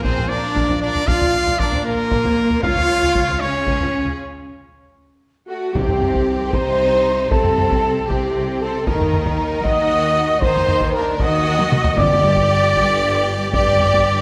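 Heroic and epic, this cinematic orchestral cue in 6/8 sets an intense, distant violin melody over a warm second violin line, a clear viola accompaniment, dark sustained French horn chords, and a bass of cellos and studio double basses. An up-front trumpet adds clear stabs until 4.2 s, when a brief break and a drum fill lead into the second section at 5.8 s; just before it, at 5.5 s, a mellow, hollow silver flute enters with its own line. Close, dry taiko drums struck with hard sticks drive the piece throughout, while articulate timpani punctuate the opening, the start of the second section, and a moment at 12.0 s, all set in the generous reverb of a scoring stage.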